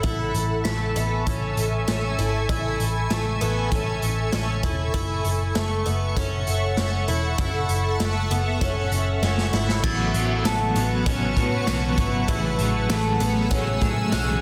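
A straight 4/4 groove from a gritty, saturated garage drum kit, with a boomy kick, snare, hi-hat, crash and tambourine, carries this ethereal, floating dream pop excerpt, anchored by a dark, foam-muted electric bass that sits up front. A detuned, granular pad with a slow attack and octave-up shimmer holds sustained chords over boxy, octave-doubled twelve-string acoustic arpeggios coloured by subtle chorus and tape echo, while a sparkling glockenspiel with its own tape echo rings faintly in the background from 0.6 to 4.4 seconds and again from 9.8 seconds. After a drum fill at 9.2 seconds, a slightly broken-up electric guitar with tremolo and lush chorus joins at 9.8 seconds as the harmony shifts.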